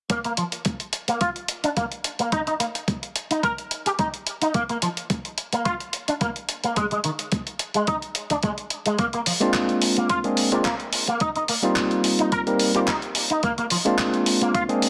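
Feel-good and groovy, this nu-disco passage, cut from a longer piece, rides a gently swung sixteenth-note feel in 4/4. A bright, twangy electric guitar with an envelope filter plays a clean, picked riff up front, colored by ensemble chorus, a low-pass filter and delay, with a filter sweep running across it throughout. Alongside it, a dusty soul sampler-style drum kit adds handclaps and hi-hat with a gritty, tape-warm character, joined by a thumpy, compressed electronic kick drum, both re-recorded in a large room. At 9.4 seconds a barky tine electric piano enters with direct, up-front accompaniment touched by delay, as the harmony moves through chords built on Bb, Eb and Ab. A moderate digital room reverb frames the parts, and the master is dense and heavily limited in a modern style.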